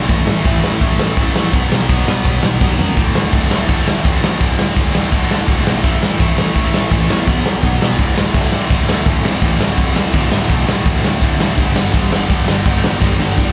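Upbeat and energetic, this punk rock excerpt from a live club gig pairs a distorted, scooped guitar and an overdriven guitar grinding out riffs alongside a growly, fuzz-laden picked bass, while a gritty, punchy garage drum kit sits up front with fills at 2.6, 8.3 and 13.0 seconds, moving from A5, B5 and D5 power chords to a shift at 8.7 seconds that reaches G5, all heard through the venue's dull, rolled-off PA.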